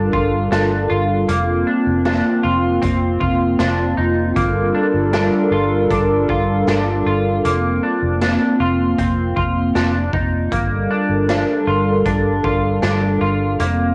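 A hazy, cassette-recorded home production with light reverb and a sense of studio ambience opens this short dream pop passage cut from a longer piece, its mood ethereal and melancholic. A hollow, flute-like pad sits up front with slow-attack sustained chords, its detuned tones softened by chorus and tape coloring as the harmony moves between Gm7 and Fsus4. Beside it, a bright, clean semi-hollow electric guitar plays compressed, picked arpeggios through analog chorus and tape echo, giving the track its shimmering thread. Underneath, a vintage foam-muted fingered bass adds a dark, round, punchy low end. A raw garage drum kit recorded in a small room keeps a straight 4/4 pulse on hi-hat, kick and snare, its gritty, saturated, warm sound sitting mid-forward with a rolled-off top.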